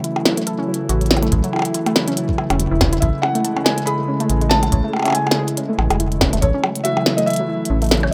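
This intricate, glitchy IDM fragment opens with a warbling, nostalgic pad holding detuned sustained chords, a dusty lo-fi pluck spinning arpeggios through chorus and digital delay, and an up-front glitchy drum kit of clicky hats, a tiny snare and percussion blips, all riding a gentle swing. A metallic FM bass with a fast attack and decaying tone arrives at 0.9 seconds, and a sampler-style kick, compressed, pitched up and gritty with a thumpy, tape-warm body, joins at 1.3 seconds before dropping out shortly ahead of the close. At 3.0 seconds a felt-muted upright piano brings an intimate, mellow melody high above the rest, softened by digital delay and plate reverb. The harmony moves from F#m7/A to Amaj7 and back again. A small room and a rough home-demo mix give the whole piece a homespun, vintage charm, and the excerpt is cut from a longer work.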